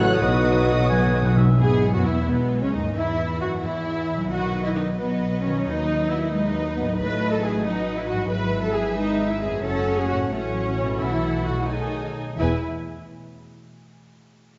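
In a rolling 6/8, this spirited, cheerful romantic orchestral passage begins with a brief timpani fill just after the downbeat, while flute, oboe, clarinet, a very quiet dark trombone section and a very quiet tuba sound only in the first 1.6 seconds. Two violin sections carry the lush, bowed melody and a second line, over a rich, up-front viola accompaniment, mellow French horn chords, ringing harp arpeggios, and cellos with clear double basses in the bass. The timpani returns near 4.3 and 11.0 seconds, and the moderate stage reverb surrounds the distant, lush strings as the harmony moves toward a cadence on the home chord.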